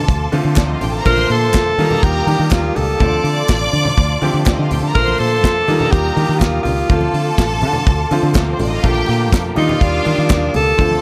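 Sultry and danceable, this disco groove at 123 BPM cycles through Dm7, Bbmaj7 and Ebmaj9, with a breathy, whispered alto saxophone carrying the melody up front from 1.1 seconds over intimate grand piano with audible action noise and a round, foam-muted fingered bass. A dark, smooth acoustic drum kit with a tight kick sits beside very quiet ringing congas and crisp, dry group handclaps, while a lush, distant string section with tape echo plays a second line. A soft, flute-like tonewheel organ with chorus vibrato and key click holds sustained chords in the background, all in light small-room reverb in this cut from a longer piece.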